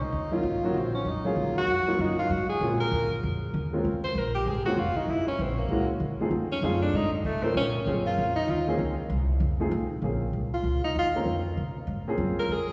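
Bathed in a wet church reverb, this moody, cool small-group swing and bop fragment in Bb minor moves at 194 BPM as a warm, up-front tenor saxophone solos throughout with vibrato and scooped notes, over a woody, thumpy pizzicato upright bass and a natural-sounding baby grand piano comping through Ebm9, Gb7 and F7#9 changes.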